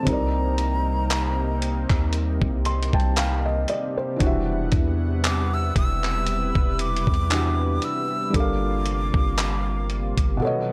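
A lightly swung groove from a compressed, sampler-style soul drum kit of thumpy kick, hi-hat and handclaps, re-recorded in a large room, drives this moody, sensual contemporary R&B excerpt, with a deep, sine-toned 808-style bass holding long decaying notes up front, a soft felt-muted upright piano with audible action noise adding a fill from 2.1 to 4.2 seconds, a lush detuned unison pad with chorus sustaining Cm9, Em9 and Gm9 chords, and a breathy jazz flute carrying the melody with unsteady vibrato, all captured as a dry, gritty hardware recording.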